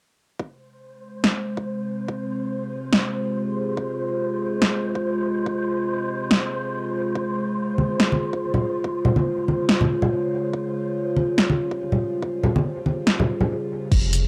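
This deep dubstep excerpt rides a half-time 4/4 groove with a swung sixteenth-note feel, heavy and dark from the start. An overdriven electronic kick drum, deep and up front, enters at 0.4 seconds, joined by a deep house drum kit whose punchy snare, hi-hat and crash cymbal carry the same grit, both sounding re-recorded in a small room. Alongside them, an up-front, resonant drone of sawtooth and sine tones holds sustained chords from Fm to Db, its moving overtones blurred by chorus, reverb and cassette tape, while a breathy, wind-like noise layer hovers high and dim in the background. Bright, compressed congas played with soft hands arrive at 7.8 seconds, and a round dub sub bass touches down on a low F only at 13.9 seconds, just before the cut. A moderate spring reverb and the character of a home cassette recording give the whole piece a close, homemade atmosphere.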